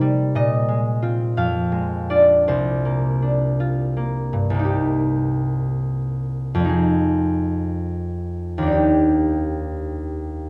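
A concert harp, sounding warm, ringing and up front, carries this classical solo piece alone from start to finish, fingerpicked across a span from C2 to Bb5. The mood is graceful and serene, with the music flowing in 6/8 and a rubato feel that lets the pulse breathe freely. The opening section moves through suspended and sixth-chord colors such as Bb9sus4, Fm6 and C9sus4, lending an open, unresolved quality. At 4.7 seconds a second section begins, settling onto Cm7 and Fm7 before arriving on Ebmaj7 at 8.8 seconds. A wet recital hall reverb surrounds the instrument, giving the short passage, cut from a longer piece, a spacious and reflective setting.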